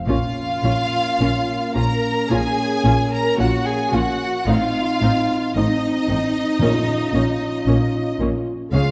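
A solemn, elegiac classical passage in Bb minor, cut from a longer piece, moves at a slow, rubato 56 BPM in 4/4. A focused, close violin section carries the melody high in the register with vibrato, while a second violin section adds an expressive line beneath it, lush and marked by portamento. Woody violas and soft-attacked cellos with a smooth top sit in the background, and a focused double bass section anchors the bass alongside the cellos. A mellow, tight French horn section holds sustained chords throughout, moving from Bbm to F7/A at 4.5 seconds and back to Bbm at 6.6 seconds, where timpani with soft mallets on calf heads enter with a round Bb2 until 8.1 seconds. The whole is bathed in a reverberant scoring-stage ambience, giving it a dark, warm production.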